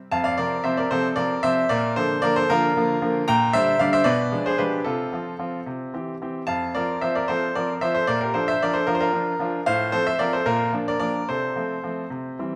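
A playful, elegant classical-period piano sonatina in a lilting 6/8, played solo by a clear, intimate baby grand with audible action noise and long sustain, sitting up front in a wet recital hall reverb as it moves through a graceful chord progression from 0.1 to 12.6 seconds before the excerpt cuts off.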